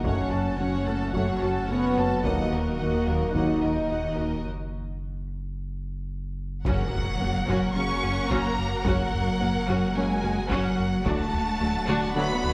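A moderate scoring-stage reverb wraps this relentless, vast hybrid orchestral and electronic film cue at 109 BPM, where bowed strings, a mellow French horn section, a clear trombone section and a thick detuned pad hold sustained chords and a tine-like synth pluck plays arpeggios over deep sub bass, a round analog bass riff, cellos, double basses and hard-stick taiko, moving from Gbm and Ebm through a break with a drum fill to an electronic impact at 6.7 s, when a high, expressive violin melody enters over Gb before turning to D.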